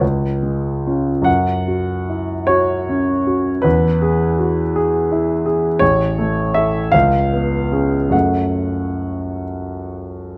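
A close, detailed recording places a clear, polished grand piano up front in a recital hall, with a moderate reverb that lets each note's long sustain hang in the air. This is a brief cut from a romantic classical nocturne for solo piano, melancholic and wistful in mood. It moves in a slow 6/8 at roughly 45 to 58 dotted-quarter beats per minute, with a free rubato feel. Set in F# minor and tuned slightly low with A4 at 437 Hz, the piano spans from A1 up to F#5 across its 10.4 seconds. The harmony drifts from C# through F#5, E and A to C#7 at 6.9 seconds before settling on F# minor at 8.1 seconds.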